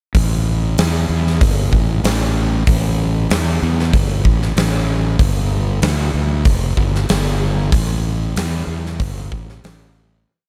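Rock with a shoegaze and dream pop haze, this brooding piece moves at 95 BPM in a straight 4/4, its tuning sitting slightly high at A4 = 441 Hz. A fuzz-drenched, overdriven fingered electric bass drives eighth notes low in the register, and a huge arena drum kit with a punchy kick, medium-tuned snare and hi-hat lays down a big rock groove, both parts up front in a dry mix. The whole short piece is a single section that fades out from 7.7 seconds to its end at 10.3 seconds.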